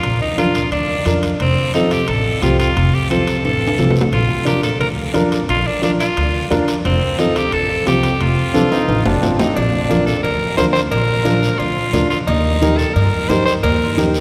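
A festive, danceable cumbia groove moves at a brisk 176 BPM in straight 4/4 and Bb major, with congas set back in the room, a close raspy guiro and very quiet, ringing timbales and cowbell driving it, plus short drum fills near 3.4 and 8.5 seconds. An up-front, gritty alto saxophone carries the melody with light vibrato over a woody pizzicato upright bass and a dark, mellow upright piano, while a bright trombone slips in briefly in the background from 8.5 to 9.6 seconds. The whole cut, taken from a longer piece, sits in the long, cavernous reverb of a church or concert hall as the chords move from Bb and F to F7 and then Eb.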